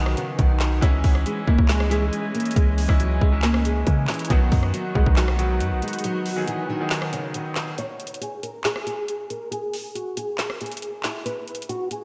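A dark, hard-hitting trap excerpt opens on a fingerpicked nylon-string guitar melody, small and shadowy with audible finger squeak, colored by ensemble chorus, a low-pass filter and tape echo. Beneath it, a brilliant grand piano plays intimate accompaniment with audible action noise and long sustain, while a warbling, nostalgic lo-fi pad of sawtooth and triangle tones holds slow-attack chords in the background. A deep, boomy 808-style bass with a sine body, a noise layer and a fast attack sits up front, alongside an electronic trap kit of hard-clipped kick, woody snare, metallic hi-hats, rim clicks and handclaps in a half-time feel. The bass drops out at 5.8 s, just before a break begins at 6.0 s, and the piano and pad fall away by 7.8 s, when the chords stop and a filter sweep runs across the guitar over the drums until the cut. A lush hall reverb soaks the dreamy mix.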